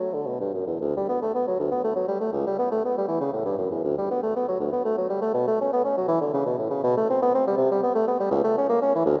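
A mellow, up-front solo bassoon with light vibrato and soft attacks spins a flowing, radiant baroque-style fantasia in a rubato 6/8, its line ranging from the deep low register up into the tenor and blooming in a long, wet church reverb through this short excerpt cut from a longer piece.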